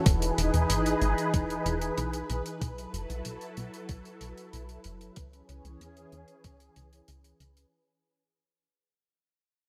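A thumpy, sampler-style electronic kick drum sits up front in this short, moody synthwave clip, cut from a longer piece and fading out over its whole length; the kick drops away at 6.6 seconds. Beside it, a silky, string-like analog pad holds sustained chords with a slow attack, a moving notch, vibrato and ensemble chorus, and sidechain pumping. Underneath, a glossy, retro chorused synth bass blends pulse and sawtooth tones with a quick filter pluck, settling into a mellow sustain. A dry hi-hat with a rolled-off top sits low in the mix, and both drums carry a small room ambience. The harmony moves from Emaj7 to B7sus4 and then C#m7 in a straight 4/4 feel. A lush hall reverb and bright 1980s-style digital production give the clip a cinematic sheen.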